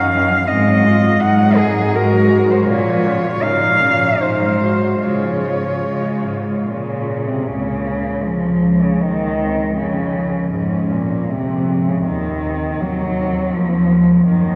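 Four muted cellos, each a single bowed player con sordino, begin together in a serene, lyrical classical piece in 3/4 with a rubato feel, heard from further back in a cathedral space with long, wet reverb. Up front, the veiled melody cello sings with vibrato over a second line that glides with soft attacks and portamento until 14.3 seconds, a dark accompaniment cello with portamento, and a distant bass cello with light vibrato. The harmony moves from Ab5 through Bbm and Ab7 to Db, and a second section from 7.5 seconds turns toward Db/F and Ebm before this excerpt ends.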